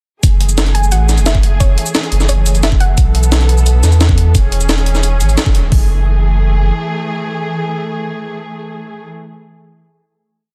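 A dense, heavily limited and dry mix opens straight into a lush, melancholic liquid drum and bass drop, where veiled, con sordino strings hold sustained chords under sidechain pumping while a deep sine-and-triangle sub bass with its octave sits up front with long gliding notes. Two drum layers drive the rolling two-step groove: an overdriven electronic kit with a knocking kick and bright hats, re-recorded in a small room, and a gritty, pitched-up sampler-style break with a high-tuned snare and shaker. A soft, round pluck with chorus and delay traces a short call-phrase motif near the start, a band accent lands at 5.4 seconds, and the strings and sub bass carry into a final chord, with the strings sustaining until 9.1 seconds.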